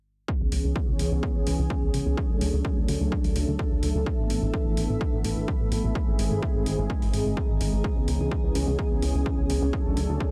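An overdriven, up-front kick drives this dramatic, melancholic melodic techno excerpt at 127 BPM in C# phrygian, joined by a punchy sawtooth bass plucking under a filter sweep, a tape-warm hi-hat, a smooth, detuned analog pad holding chorused chords from C#m7 through D, Asus2 and G#, and a blurred granular cloud pad that drifts in at 1.1 s, with the pads, bass and hats pumping to the sidechain amid light reverb and a faint mains hum.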